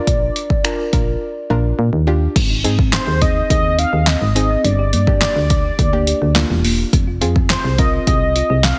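A velvety, detuned synth lead carries the melody up front in this carefree, upbeat dance-pop excerpt at 105 BPM in a straight 4/4, coloured by chorus, vibrato and a digital delay. Beneath it, a soft, dark filter pluck adds accompaniment, while a punchy FM bass sits up front, both breathing with sidechain pumping. A layered deep house kit sits up front in the mix, with a deep kick, a fat snare given soft clipping, handclaps, finger snaps, hi-hat and crash, all carrying a tape-warm small-room character. After a silent gap from 1.2 to 2.4 seconds, a tine-like, thumb-piano-style synth pluck enters in the background with gentle arpeggios. The chords move from Bb through Ab and Gm to Fm under light reverb and a dense, heavily limited modern master.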